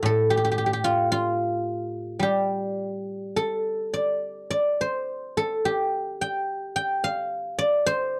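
Longing and contemplative, this brief 8.2-second fragment of Chinese traditional solo plucked-string music features an up-front acoustic guzheng played with fingerpicks, its silvery, ringing tone spanning A2 to G5 at a slow 54 BPM in 2/4 with uneven, rubato beats, captured in a dry, close 1970s-style studio sound with light reverb.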